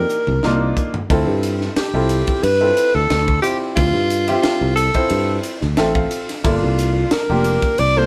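The clear alto saxophone leads this short, driving slice of electric jazz fusion, singing an up-front solo melody with vibrato, a breathy subtone and scooped notes in a jazz style. Beneath it, a growly fretless electric bass sustains its low line directly and close, while a grand piano accompanies with an intimate, natural tone where the action noise of the keys can be heard. The crisp fusion drum kit opens with a fill, its bright cymbals, high-tuned snare and punchy kick sounding saturated and gritty inside a small, pumping room. At a straight 90 BPM in 4/4, the harmony moves through minor ninth chords from Cm9 to Dm9 at 1.1 seconds and on to Gm9 at 6.4 seconds, just as the piano's own fill, begun at 5.4 seconds, comes to an end. Played live together in one room with light reverb, the band gives the fragment a nocturnal mood.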